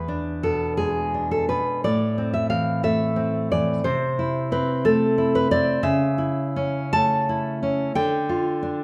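A fingerpicked nylon-string guitar, warm, full-bodied and up front with fresh strings, opens this passionate, intimate fragment of a romantic solo classical piece on an E7 chord, moving freely in a rubato 6/8 through Am, Am/C and A/C# before reaching Dm at 7.9 seconds, its range from E2 to A5 carried by a moderate recital-hall reverb.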